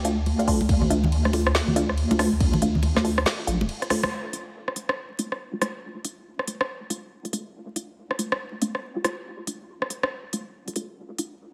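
A swung, half-time groove at 140 BPM drives this brooding, meditative deep dubstep piece in D minor, opening on a drop. A dark, up-front triangle-and-sine wobble bass with chorus is soon joined by hard-handed, close congas carrying dub echo and a layered electronic kick. Throughout, a deep house kit supplies a woody snare, smooth hats, rim clicks and crash, while a muted sawtooth chord stab with ring modulation, phaser and dub echo sounds a Dm chord. A drum fill and band accent lead into the next section at 4.1 seconds, where the bass and congas have fallen away and a filter sweep moves over the stab, with light reverb and vinyl crackle colouring the sound.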